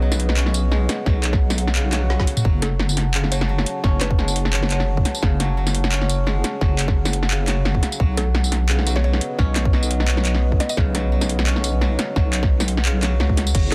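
Spacious and cinematic, this half-time drum and bass excerpt at 173 BPM rides a deep, up-front wobble bass with chorus and a moody analog pad that pumps against the sidechain, while a dry koto picks out arpeggios through tape echo over chords moving from B to F#m and back. A layered electronic kit with a woody snare, metallic hats, handclaps, tambourine, toms and crash sits forward alongside a tight electronic kick that enters at 1.1 seconds, just before a very quiet swell and a short drum fill. A faint, round FM pluck adds brief mallet-like melodic phrases, all within a dense, heavily limited master with little reverb.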